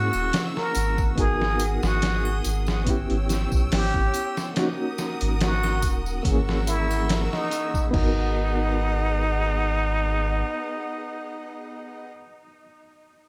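A slow, lightly swung 71 BPM groove in 4/4 drives this brooding, cinematic trip hop fragment in G# minor, carried by a gritty, pitched-down sampler-style drum kit with a thumpy kick, medium-tuned snare, hi-hat, toms and crash that plays from 0.3 to 8.2 seconds before dropping away. A deep, round dub sub bass sits up front beneath it, while triangle and tambourine, joined by egg shaker and group handclaps, tick along quietly in the background. Over the top, a plunger-muted trumpet leads with a raspy, growling, wah-wah jazz voice, breathy and vibrato-laden, carrying tape echo and a roomy, distant quality even as it stays prominent. A reedy electric piano with fast tremolo and its own tape echo comps through the chords F#7, G#m7, Em6 and D#m7, lingering alone until 13.3 seconds after the other parts fade. Beneath it all, a lush bowed string section holds smooth, even sustained chords, and the whole mix stays dry.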